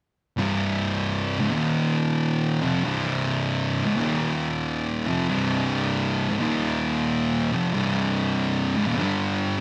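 Heavy and brooding, this metal excerpt moves at 98 BPM in 4/4 with a swung eighth-note feel, set in C minor. Two thick fuzz guitars carry the riff together from 0.4 to 9.6 seconds, both sitting up front in a range from C2 to G3. One guitar has a distorted, picked tone with a rounded heat to its fuzz, while the other leans darker. The harmony rocks between C5 and Eb5 power chords before settling onto a full C minor chord and closing on G5. A moderate echo chamber reverb with a 2.1-second decay gives the guitars a lingering tail.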